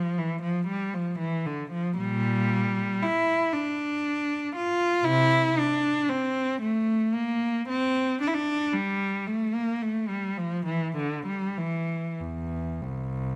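Close, detailed microphones place a single bowed cello up front in a recital hall whose moderate reverb lets each note bloom and fade. This serene, radiant baroque-style suite movement moves in a slow, rubato 3/4 at around 48-59 BPM, with the rich cello ranging from C2 to F4. The expressive playing carries vibrato and portamento in a brief 13.4-second passage cut from a longer piece.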